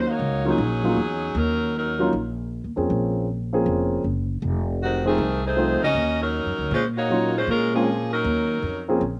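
Sultry and swinging, this short big band swing fragment at 157 BPM pairs a warm saxophone section, whose melody carries light vibrato and a slapback echo and pauses at 2.1 seconds before returning at 4.8 seconds, with dark, mellow concert grand piano accompaniment and a woody pizzicato upright bass over minor chords like Ebm7 and Bbm7 colored by an F7#9, all captured dry in an open outdoor setting.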